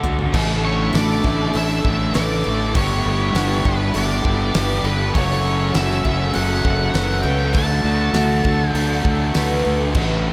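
A round, up-front fuzz bass leads this blissful, dreamy shoegaze and dream pop excerpt, where a loose indie drum kit with a fat snare, punchy kick and dusky cymbals opens on a short fill alongside a biting overdriven guitar riff with subtle chorus, a twangy clean guitar through reverse reverb and a shimmering twelve-string acoustic picking lush, chorused arpeggios with analog delay. A double-tracked distorted guitar joins in the background at 0.3 seconds and a murky octave-fuzz lead melody enters at 0.6 seconds, and all of them drift through a huge ambient reverb over the chords Asus4, G6, F#m7 and D.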